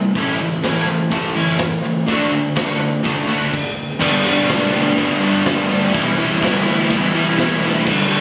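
Heard as if captured on a phone in the room, this short indie rock excerpt carries a moderate studio reverb and a compressed sound. At 125 BPM in a straight 4/4, the mood is jangly and wistful, moving from A to D before landing on E minor at 4.0 seconds. Two overdriven electric guitars sit up front playing riffs: a semi-hollow guitar with a warm, hollow-body tone, and a biting one treated with ensemble chorus and slapback echo. A raw garage drum kit, also up front, brings crash, hi-hat, a punchy kick and a medium-tuned snare in a gritty, pumping stone room with a rolled-off top, while a growly fuzz bass sits in the background. A brief stop arrives at 3.5 seconds, and a very quiet, jingly tambourine joins for the second half.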